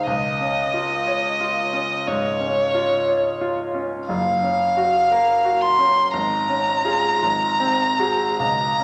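Serene and tender, this short excerpt from a romantic classical duo unfolds with a gently rubato feel, as a single bowed violin sings the melody high in its range with a rich, focused tone and vibrato. Up front beside it, a brilliant concert grand with a slightly worn character and deep bass supplies the accompaniment, moving from Db through Gbmaj7 and Db/Ab to Ab9. Both instruments play throughout, bathed in the wet reverb of a recital hall.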